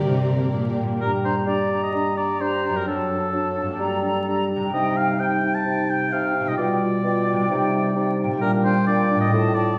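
Classical and dramatic, this urgent, restless fast romantic movement in G minor at 130 BPM opens with a brief passage of bowed strings, a rich violin section held in the background over lush violins, dark close violas and an expressive cello bass, before they stop at about 1 second and the winds take over, with an up-front oboe, airy distant flutes, a mellow clarinet and a smooth bassoon carrying the lines over a bright, ringing harp's arpeggios, all set in a reverberant hall heard from further back with a vinyl crackle.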